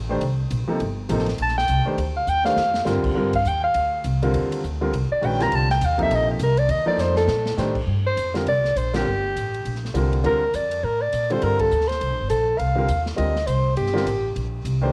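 Spiritual and hypnotic, this modal jazz excerpt in G minor swings at 204 BPM, with a woody pizzicato upright bass and a smooth, deep-voiced concert grand piano laying out Gm11 and Cm11 chords from the start, while an airy big-band drum kit with a punchy kick and cassette-tape colouring adds fills at 2.3 and 7.0 seconds. A mellow soprano saxophone, also carrying a cassette-tape tint, enters at 1.4 seconds with a forceful jazz solo touched by light vibrato, reaching as high as Bb5. The band hits accents at 8.9 and 11.6 seconds in the second section, and the whole home cassette recording sits in a small room with light reverb.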